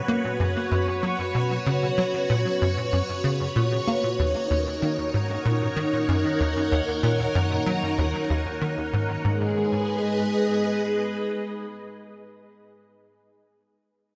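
Ambient, sequencer-driven space music, cut from a longer piece, moves at 95 BPM in a straight 4/4 in G# minor, tuned to A4 = 439 Hz, with a hypnotic, mysterious mood. A lush, vintage string machine sounds as a full ensemble, holding soft-attacked chords with a long release, its sawtooth tone thickened by a sub octave, a moving notch, phaser and ensemble chorus. Up front beside it, a tight, punchy sequencer bass drives a riff of sawtooth and square-wave notes with a fast attack and a decaying filter pluck, coloured by a moving notch, ensemble chorus and tape echo. The harmony shifts from F#sus4 to D#m7, then settles on G#m at 9.2 s, while a wet plate reverb casts a long 3.3-second tail over the sound. The bass drops out at 9.5 s, leaving the strings to sustain alone until 12.5 s.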